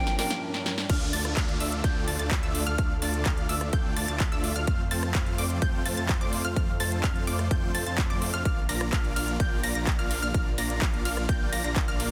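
Euphoric and powerful, this 127 BPM festival progressive house cut in D minor opens on a brief riser, drum fills and a short grand piano phrase with tape echo before the drop lands at 0.9 s, where an overdriven, punchy electronic kick and a thick detuned saw bass anchor the low end with the big-room kit's snare, claps, metallic hats, ride and crashes. Above them a huge, airy supersaw riff and a bright unison pluck arpeggio pump with sidechain and tape echo, while a warbling, vintage-tinged chorused pad sustains chords in the background and a riser and downlifter sweep underneath through 4.7 s. The chords move from Gm to Dm, F and Bb in a dense, heavily limited mix with light digital reverb.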